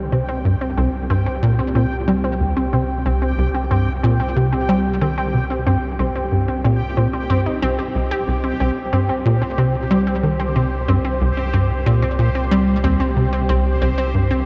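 From the opening moment, a deep, round sub bass and a bubbling, resonant texture of random filter steps enter together, setting a mysterious, cosmic tone for this ambient, sequencer-driven space music at 92 BPM in a straight 4/4. Almost at once a punchy, saturated sequencer bass takes the lead in the mix, driving an evolving riff from C2 to G3 through ensemble chorus and tape echo. Above it, a lush, detuned unison pluck spins bright arpeggios between C4 and G4, its wave-folded, ring-modulated edge trailing tape echoes. The detuned texture floats higher, from G4 to G5, softened by chorus and its own reverb, while the sub bass holds a mellow, sustained C2 beneath everything on a C5 chord. A huge ambient space with a long 8.1-second decay and a dark production wraps this 14.5-second passage, cut from a longer piece, in a shadowy haze.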